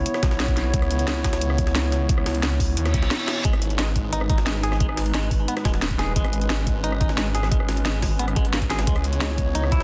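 A snarling, sawtooth bass sits up front from the first moment, growling and detuned with tube saturation and distortion, a moving notch carving through its sustained tone. Around it, this tense, dark slice of technical drum and bass is driven by an overdriven electronic kit: a knocking kick, a cracking snare, rim clicks and bright hats, all layered and re-recorded in a small room. Tucked in the background, a gritty, pitched-up sampler-style jungle kit adds a high-tuned snare and hats, both thinned by high-pass filtering and carrying a tape-like patina. A deep, nasal analog pad holds moody sustained chords with chorus and sidechain pumping, moving from C#m7 to G#m and back to C#m7. A brief reverse cymbal rises at 2.9 seconds, leading into a clean, twangy electric guitar that picks bright arpeggios through digital delay from 3.4 seconds onward. The mix has light digital ambience and a dense, heavily limited modern master, and the passage is cut from a longer piece.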